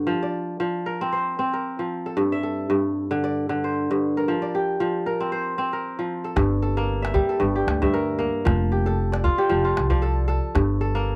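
A dry, close 1970s-style studio sound with light reverb frames this flowing, hypnotic West African string and xylophone excerpt in G dorian at 114 BPM with a light swing, where a ringing, crisp, up-front fingerpicked kora spins arpeggios from the start, joined at 6.4 seconds by a woody, growly pizzicato upright bass and a deep, saturated calabash.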